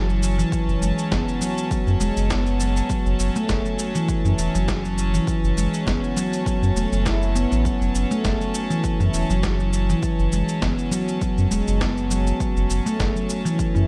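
Light studio reverb frames this earthy organic downtempo excerpt in F# minor at 101 BPM with a gentle 16th-note swing, where a ringing, mellow handpan plays close, up-front arpeggios through digital delay over a round, deep analog bass with tube saturation and sidechain pumping, sustained bowed chords from a bright chamber string section that also pump, a gritty sampler-style shaker and snare in small room ambience, and a punchy, overdriven electronic kick, holding a single F#m chord throughout.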